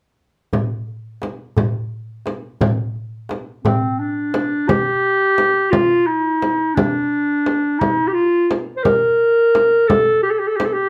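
A straight-feeling 6/8 pulse opens this excerpt of Arabic maqam ensemble music, with a deep, clay-shelled darbuka played with soft hands alongside a small, bright frame drum, both close and dry. The darbuka drops out around 4.5 seconds, while the frame drum carries on as a vintage-toned, classical-style solo clarinet, clear and up front, enters at 3.6 seconds and sings a longing, melancholic line through the second section. The whole is set in a wet studio reverb that places the listener further back in the room.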